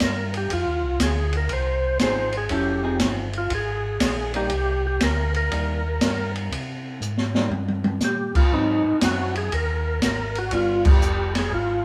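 Soul jazz organ trio in C minor at 120 BPM with a swung, late-night bluesy feel, where an up-front percussive tonewheel organ carries the lightly overdriven melody through slow rotary speaker and chorus vibrato over a mellow, round organ bass line and an open acoustic drum kit with dark cymbals, a high-tuned snare and a boomy kick, joined at 2.0 seconds by a dark, clean, picked hollow-body archtop guitar comping through Fm7, Cm7, Ab7 and G7b9, with a drum fill at 7.0 seconds and a band accent at 10.8 seconds, all set in a moderate stone room reverb as the band plays live together in this excerpt cut from a longer piece.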